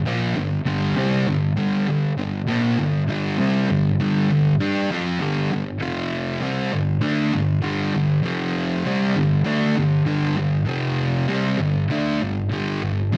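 Rowdy and raw, this rock fragment, cut from a longer piece, runs at 99 BPM in a straight 4/4, tuned to A4 = 444 Hz. A thick, picked electric guitar plays solo and up front from 0.1 to 13.2 seconds, double-tracked and soaked in fuzz distortion with a slapback echo. It moves between G5 and F5 chords, first shifting at 5.8 seconds, across a range from F2 to G4, within a moderate studio reverb where lossy compression artefacts can be heard.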